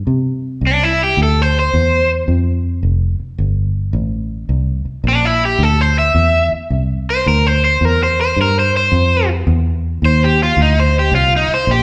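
A soulful, gritty blues cut from a longer piece, moving at 108 BPM in 4/4 with a swung eighth-note feel in C mixolydian over chords such as Cadd9, Fadd9, C9 and F7(no3). A dark, round, foam-muted fingered electric bass sits up front from the start, and at 0.7 seconds a bright, crunchy overdriven guitar enters with a picked solo melody, also up front. The band plays live in one room, bathed in a large, wet studio reverb.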